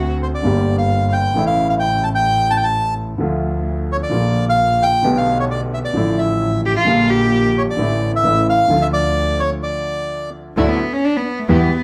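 A reedy bandoneon carries the melody up front from 0.2 s to 10.3 s, its dark, boxy tone lending a melancholic, sultry cast to this tango excerpt in D harmonic minor at 131 BPM, played with a rubato feel. Beneath it, a smooth, vintage grand piano supplies the accompaniment, while a focused, bowed double bass with vibrato anchors the low end, moving through Gm, A, Dm and Bb before settling toward Dm. An intimate, close cello with light vibrato and an airy, soft-attacked sul tasto tone adds a second line in brief entries, then takes a short solo from 10.6 s over a Dadd9 chord after a break. At that point a distant, woody studio string section adds lush stabs in the background. The band sounds as if playing live in one room, bathed in a large, wet studio reverb.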